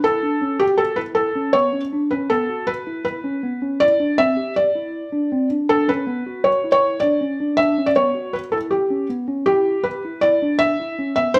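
A felt-muted upright piano carries the melody at the front of this short cut from a longer progressive instrumental, its soft, mellow, intimate and natural tone colored by thin felt, short sustain and audible action noise. Beneath it, a tine electric piano plays arpeggios in a lower register, its clean, warm sound heard through its built-in speakers and set further back than the upright. The mood is tense and intricate, moving at 159 BPM in 5/4 with a straight feel in E dorian. The harmony passes through E5, Csus2 and D before arriving on Em at 9.5 seconds, where the opening section begins again. Both instruments play together throughout, from 0.0 to 11.4 seconds, captured as a band playing live in one room with a moderate stone-room reverb.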